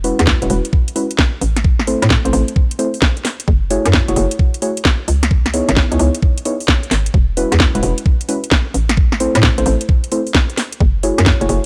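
A knocking, tape-colored electronic kick enters up front at 0.3 s in this soulful, sunny two-step UK garage cut from a longer piece at 131 BPM with a swung 16th feel, landing on a layered garage kit of cracking snare and metallic hats in studio reverb, a hollow, bouncy FM bass with tube saturation, and deep, nasal, full-bodied chord stabs with chorus and tape echo cycling through E6, Am, F#m7 and C#m7, all three already playing from the very start, and everything is captured as a dry, gritty hardware recording.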